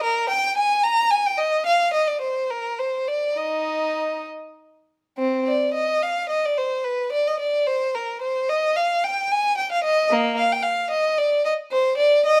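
A lone bowed violin, rich and focused with vibrato and placed up front in a moderate stone-room reverb, plays an introspective, solemn baroque-style classical suite movement in 6/8 with free rubato, heard as a 12.4-second fragment cut from a longer piece.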